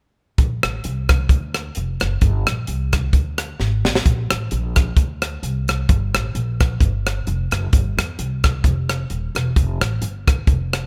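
A crisp fusion drum kit leads this short uptempo gospel excerpt, its high-tuned snare, punchy kick, hi-hat and rim clicks sitting up front with an airy, polished studio-room sound. Beneath it, a pizzicato upright bass with steel strings adds a woody tone, also up front but mixed lower than the drums, ranging from Eb1 to E2. The pair moves at 131 BPM in 4/4 with a light swing on the eighth notes, giving the music a soulful, hopeful feel. Both parts enter together at 0.4 seconds, and a drum fill at 3.6 seconds carries the groove into a second section that begins at 4.1 seconds. The recording has little reverb and the rough, unvarnished quality of a home demo, cut from a longer piece.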